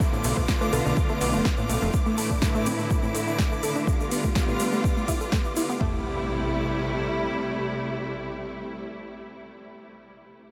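The studio string section sits up front, its bowed ensemble holding sustained chords with vibrato, a smooth top and the push and pull of sidechain pumping, carrying this bittersweet, driving progressive house excerpt at 124 BPM in A minor through Bm7b5, Dsus2/A, G7 and Am7. Beneath it, an overdriven deep house kit lays down a deep kick and toms until 5.9 seconds, joined by punchy snare and metallic hi-hats, with a grainy egg shaker and very quiet electronic cowbell and congas adding light percussion. A punchy, funky analog bass built from sawtooth and pulse waves plucks briefly at the start, pumping under the sidechain, while a lush, detuned unison pluck plays arpeggios in the background with delay and a filter sweep. High above, a reversed, granular swelling texture with soft attack, long release and chorus shimmers dreamily. A very quiet downlifter and impact frame the passage, and at 5.8 seconds the rhythm falls away to leave the strings on Am7 alongside the impact, all bathed in a huge ambient reverb.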